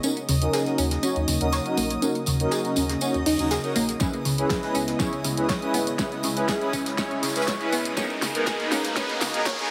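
A soft, smooth supersaw sits up front with detuned stabs through low-pass filter and dub echo, joined by a glassy, crystalline wavetable pluck arpeggio with chorus and tape colour, an evolving analog pad, a round, deep analog bass from 0.3 seconds, an overdriven pop kit with fat snare, background jazz brushes on a high-tuned snare, a reversed granular swelling texture, a knocking overdriven electronic kick from 4.0 seconds, and a background riser from 6.3 seconds, all building through filter sweeps and a drum fill over D#m7, C#m7 and G#madd9 in this emotional, driving progressive house excerpt at 121 BPM in C# dorian, with sidechain pumping on most parts and a lush hall reverb.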